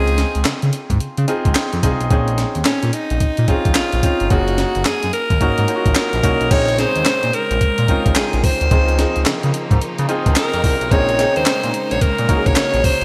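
A raspy, close-miked alto saxophone carries the melody up front in this punchy, bouncy new jack swing R&B excerpt at 109 BPM in Bb minor, over a gritty, thumpy sampler-style breakbeat kit with handclaps and gated reverb, a smooth detuned synth bass, a polished concert grand piano, and a lush bowed string section that enters in the background at 6.5 seconds, set within bright 1980s-style digital production and a hall reverb.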